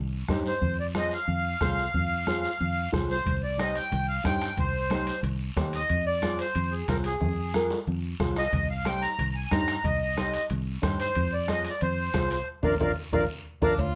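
A light reverb gives this fiery, driving cumbia excerpt an open feel, with a sweet, reedy accordion carrying the melody up front over an airy light tremolo tuning while a dark, thumb-plucked flamenco guitar also sits up front beside it. Beneath them sit a round, foam-muted fingered electric bass, a soft-beater bombo in a distant large room, thick-skinned congas struck with hard hands in the background, and a raspy guiro, with quiet ringing timbales and cowbell joining at 3.3 seconds. The chords move between Cm and Fm before a Bb band accent with drum fills near the end, where a bright, smooth-topped tenor saxophone with light vibrato slips in at 13.6 seconds.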